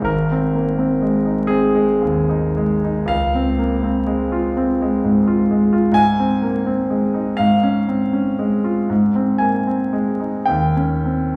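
A clear, deep-bassed concert grand opens this serene, nostalgic romantic nocturne for solo piano in Ab major, drifting in rubato 6/8 at 34-44 BPM in dotted quarters through Ab, Dbmaj7 and Db/Ab before settling on Eb7 at 10.5 seconds, its polished tone heard from further back in a wet recital hall with vinyl crackle, cut from a longer piece.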